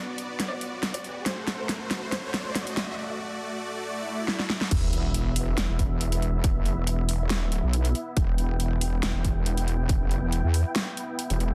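A half-time 4/4 pulse at 139 BPM drives this menacing, aggressive heavy wobble dubstep, cut from a longer piece. It opens with a build-up where a very quiet, expressive violin section plays a bowed melody with vibrato until 2.7 seconds, over huge, bright supersaw chords that pump from sidechaining and pass through a low-pass filter, moving from B minor through F-sharp diminished to D. A dubstep drum kit with a huge snare, metallic hats and crash cymbal sits up front, playing fills during the build, while an electronic riser, swell and sub drop sit in the background. The drop lands at 4.7 seconds on an E5 chord with an impact, bringing in a punchy, tape-warm electronic kick and a heavy, saturated wobble bass that is detuned, chorused and overdriven, placed up front in the low register. The sound is dense and heavily limited, with light reverb.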